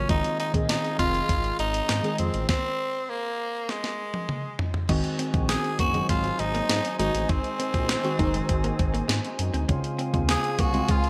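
Dramatic and nostalgic, this short excerpt of 1980s-style pop moves at 100 BPM in a straight 4/4, cut from a longer piece. A raspy, gritty tenor saxophone carries the melody up front with bright vibrato and a digital delay, while glassy digital keys with chorus and a filter sweep supply the accompaniment and a flute section holds airy sustained chords in the background. A smooth sawtooth synth bass anchors the low end, and a clean 12-bit drum machine with a thumpy kick, medium-tuned snare, hi-hat, toms, crash cymbal and gated reverb sits up front, breaking into a fill from 3.7 to 4.9 seconds within a stop. At 4.9 seconds a direct-recorded clean electric guitar enters with a compressed, picked riff drenched in lush chorus, as the harmony shifts from Fm7 to Ab7 and later to Dbmaj7. Moderate plate reverb and bright digital production give the whole a glossy period sheen.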